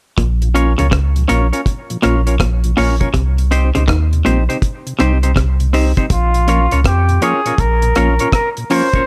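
A clear, up-front flugelhorn with vibrato takes the melody at 6.1 seconds in this meditative, hypnotic roots reggae excerpt in Bb dorian at 81 BPM, carried by round sine sub bass, a dry, dark drum kit with tight kick, rim click and hi-hat, a bright, twangy picked guitar riff that stops at 5.6 seconds, a clean, hollow-body semi-hollow guitar, and a soft, flute-like tonewheel organ with key click and slow rotary speaker in the background, the organ, semi-hollow guitar and horn all bathed in dub echo and plate reverb over a Bbm to Cm progression.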